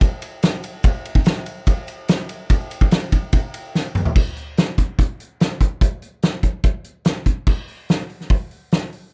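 Rock at 145 BPM in a straight 4/4, cool and bittersweet, this short cut from a longer piece centers on a loose indie drum kit set up front, with a punchy kick, fat snare and dark crash, ride and hi-hat plus toms, while a grainy, bright tube shaker sits in the background until 4.1 seconds, partway through a drum fill that runs from 3.7 to 4.2 seconds, all captured with little reverb.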